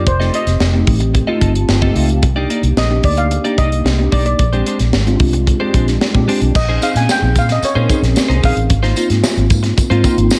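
Upbeat and glossy, this excerpt of polished 1980s jazz-funk pop carries a bright, shimmering steel pan melody over a mellow tine electric piano with ensemble chorus, which slips in a short fill at 1.1 seconds, and a clean, compressed electric guitar riff treated with analog chorus. Underneath, a dark, round, foam-muted fingered bass sits up front beside a tight funk drum kit with a high-tuned snare and gated reverb. A jingly tambourine joins in the background at 6.6 seconds as the harmony moves from F7 through Cm9 and Bb13 to Bbm11 and Ab69.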